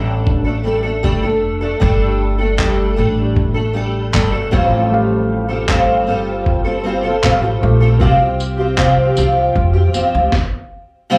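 A fingerpicked twelve-string acoustic guitar, shimmering and octave-doubled up front with ensemble chorus, plate reverb and slapback echo, opens this heartfelt, carefree acoustic pop excerpt at 78 BPM alongside a woody, dark pizzicato upright bass, with a gritty, tape-warm sampler-style drum kit of thumpy kick, fat snare, handclaps and tambourine joining at 0.3 seconds. The chords move from Gsus2 to Fadd9 to Csus4, and a soft, felt-muted upright piano slips in mellow and intimate in the background at 4.9 seconds, carrying its own plate reverb and slapback echo. Heard as a live gig through the venue's PA in a moderate club reverb, the band reaches a stop at 10.3 seconds as the guitar rings on briefly.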